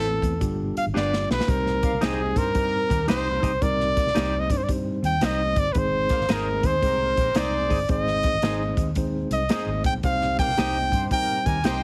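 An up-front trumpet with light vibrato carries the urgent, driving melody of this uptempo 1960s-style soul cut in C minor at 112 BPM, over mellow tine electric piano, clean fingered guitar stabs and a dark, round, foam-muted electric bass, as a polished, punchy swinging big-band drum kit joins at 0.2 seconds with a fill into the Cm chord at 1.5 seconds, and a tight, clear horn section with tape echo adds a background second line from 1.8 seconds, all given a heavily compressed radio sound with light reverb.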